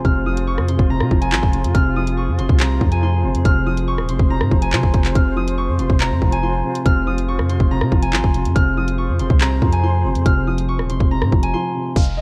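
A half-time drill groove at 141 BPM in F minor drives this tense, menacing hip hop excerpt, with an up-front electronic kit of hard-clipped kick, bright hi-hats, handclaps and rim clicks over a deep, sine-toned 808 bass whose long notes hit with a fast attack and decay. A ringing, fingerpicked concert harp carries the melody through a low-pass filter, while a dark, boxy felt-muted upright piano, also filtered, and a breathy flute section with expressive vibrato hold the harmony beneath it. An impact sounds at 0.0 seconds, a brief break arrives at 11.5 seconds, and a downlifter closes things out, all colored by small-room ambience and a worn, warbling cassette-tape pitch drift.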